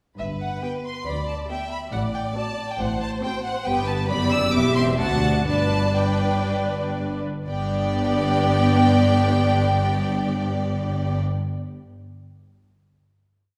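At 0.2 s a spirited, graceful classical-period string orchestra piece in G major begins with a rich, smooth first violin melody, an intense second violin counter-melody with sustained chords, a focused cello bass of bowed and pizzicato notes with passing tones, and a double bass with a smooth top doubling it, joined at 0.6 s by lush violas playing chords in the tune's rhythm, at a quick, rubato 114-140 BPM that slows from 2.8 s before a final chord at 7.5 s rings out in a wet concert-hall reverb.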